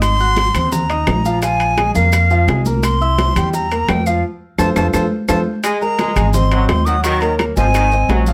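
Close, detailed microphones and light reverb give this short salsa clip, cut from a longer piece, a present and immediate sound as it drives along at 171 BPM in a straight 4/4 with a passionate edge. A bright, airy silver concert flute carries the melody with vibrato, a crisp attack and a slightly unsteady line, over a clear concert grand piano whose deep bass and long sustain fill out the accompaniment on chords such as Ab7, Bb5 and C7. Up front, a dark, thumpy upright bass on gut strings plucks a woody foundation. The percussion bed blends ringing metal-shell timbales, round low-tuned bongos and thin-skinned congas struck with hard hands in a distant, roomy space, along with very quiet claves and grainy, saturated maracas. A drum fill and band accent from 4.2 to 5.6 seconds lead into a new passage, where a punchy, vintage-toned trombone section enters at 5.6 seconds with a loose second line and light vibrato, moving through Absus2, Ebm7 and Ab7.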